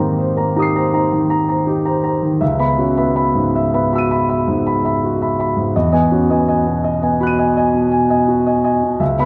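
A warm, up-front concert grand piano opens this hazy, nocturnal excerpt of impressionist solo piano, moving in a rubato 9/8 at 54 dotted-quarter beats per minute through lush Abmaj9, Dbm11 and Emaj9 harmonies across a span from deep, open bass at Db2 to Eb7, all bathed in the wet bloom of a concert hall reverb.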